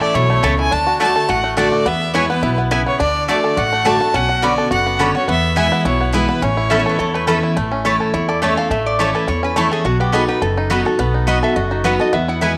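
A clear, focused fiddle sits up front, carrying the melody with light vibrato and a touch of tape echo until it drops out at 7.3 seconds. Beside it, a twangy, percussive banjo played with fingerpicks shares the lead line throughout this joyful, rustic bluegrass fragment, which swings lightly in four. A bright, full-bodied picked acoustic guitar supplies the accompaniment, while a thumpy, woody upright bass plucks the low end and a mandolin adds doubled-string stabs from the background. A lap resonator guitar joins at 6.7 seconds with a metallic, nasal second line, then takes a slide solo from 7.6 seconds as the harmony shifts. The small room and light reverb give the whole band a close, homespun sound.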